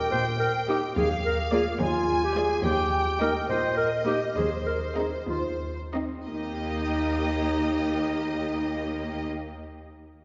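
A warm, roomy clarinet stands out in this short, whimsical film cue in Eb major, carrying a second line beside a rich, distant violin section while a clear, focused violin section holds the melody in 6/8 at around 59-72 BPM. Beneath them, a close viola section fills in the accompaniment and a lush cello section anchors the bass, both bowed with vibrato, and the tempo slows between 1.8 and 6.3 seconds. The magical, quirky mood is bathed in a wet church reverb with a soft, dark top end, and the fragment is cut from a longer piece.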